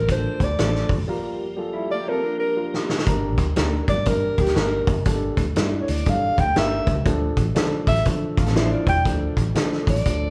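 Uptempo 1960s-style soul at 120 BPM in a swung 4/4 and G dorian, passionate and urgent: a breathy, whispered alto saxophone with vibrato carries the melody over a foam-muted, round electric bass, a woody upright piano and a gritty, saturated vintage drum kit up front, while a piping tonewheel organ with key click and slow rotary speaker holds chords in the background until 3.1 seconds, a clean, fingered electric guitar adds brief riffs, and a break from 1.1 seconds ends in a drum fill at 2.6 seconds, the band playing live in one room with large, wet studio reverb.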